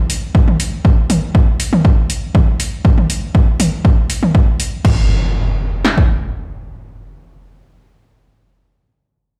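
Melodic techno at 120 BPM in a straight 4/4, this melancholic, driving excerpt is built on a punchy, tape-warm analog drum machine whose kick and snare sit up front with a small-room character and studio reverb, layered with an overdriven deep house kit of metallic hi-hats, toms and crash cymbal that pump under sidechain compression. An up-front electronic impact arrives at 4.8 s as the groove moves into its second section, and the drum machine continues until 6.1 s. The whole piece sounds as if played through a big sound system in a bare room, bathed in large studio reverb.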